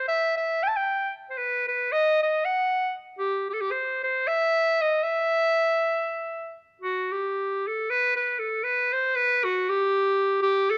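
A bright, vintage-toned clarinet plays alone and up front in free time, pouring out a fiery, restless Balkan folk line in a classical style, caught by close, detailed microphones with light reverb through this brief 10.8-second excerpt cut from a longer piece.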